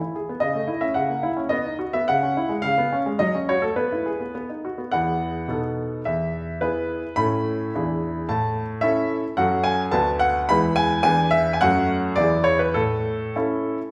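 Graceful and elegant, this classical-period piano sonatina passage, cut from a longer piece, moves in a straight 2/4 at 107 BPM in E major. A solo baby grand with a clear, intimate, natural tone and audible action noise sits up front across a range from D2 to B5, set in a wet recital-hall reverb heard from further back in the room. A new section begins at 4.9 seconds, and the music settles into A major from 9.4 seconds.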